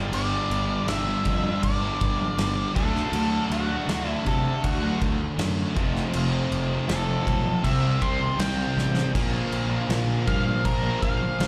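Cathartic and bittersweet, this cut from a longer quiet-loud alternative rock piece in straight 4/4 is led by a dark octave-fuzz lead guitar soloing with distortion and slapback echo over a G, D, F, C, Bb progression. Beneath it, a bright, double-tracked overdriven guitar with its own slapback echo and a warm, distorted thick fuzz guitar play riffs in the background, and a second thick fuzz guitar, very quiet and dark, adds its own riff. Meanwhile a round, overdriven fingered bass and an up-front loose indie kit with a tight kick, medium-tuned snare, crash and splash cymbals and a pumping small-room sound drive things forward, with a drum fill at 8.8 seconds. The performance comes across as a live gig heard through the venue's PA, with a touch of club reverb.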